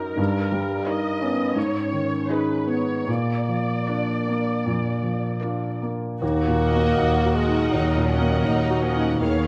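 A clear, up-front baby grand piano carries the melody through this tragic, brooding romantic excerpt for piano and orchestra in Eb minor, moving with rubato at 75-90 BPM over an expressive viola section with portamento, dark, distant French horn chords that stop at 5.4 s, a cello section in the background and a lush, close violin line, until at 6.2 s a mellow solo bassoon and a smooth-topped double bass section join, and at 6.6 s a distant symphonic violin section adds a second melody, all set in moderate scoring stage reverb.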